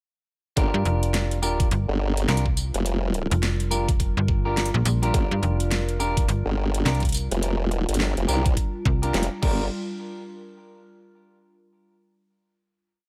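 A formant-sweep wobble bass leads this swaggering, gritty glitch hop piece: a saturated, compressed pulse-and-sine tone with chorus, sitting up front and playing modulated phrases whose wobble speed keeps changing. A snappy, digital slap-like FM bass with a metallic attack plays chopped phrases that answer it. Both sit over a knocking, tape-warm electronic kick with a broken pattern and a dubstep kit of huge snare, metallic closed hats, rim clicks, tambourine and crash, swung on the 16ths at 105 BPM. A clean, picked electric guitar adds syncopated, rootless chord stabs roughened by vintage 12-bit sampler grit and delay. Behind them, a nostalgic, lo-fi, warbling pad of detuned square, triangle and sawtooth waves holds mellow chords through chorus, phaser and its own reverb, pumping with the sidechain along with the guitar. The whole piece is a drop on Gm7 from 0.6 seconds, with a dry, close sound, ending in a final hit from 9.7 to 12.0 seconds.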